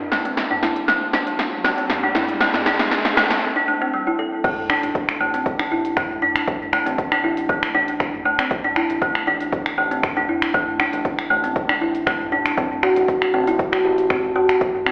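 A straight 4/4 groove drives this earthy, spiritual afro house excerpt, cut from a longer piece. A punchy, layered deep house kit of snare, smooth hi-hats, shaker, finger snaps, toms and crash sits up front from the start and plays a fill, while an electronic riser in the background runs until 3.4 seconds and a filter sweep works on the kalimba through the build-up. After a brief break, a punchy electronic kick arrives at 4.4 seconds for the drop. Throughout, a woody, hollow-bodied kalimba rings out arpeggios with a thumbnail pluck, low-pass filtered, pumping against the sidechain and trailed by dub echo, while a round, dark analog bass holds the low end with its own high-pass filter and sidechain pumping. The mix sits in a plate reverb and stone-room ambience with a telephone-like tint, as if played on a big sound system in a bare room.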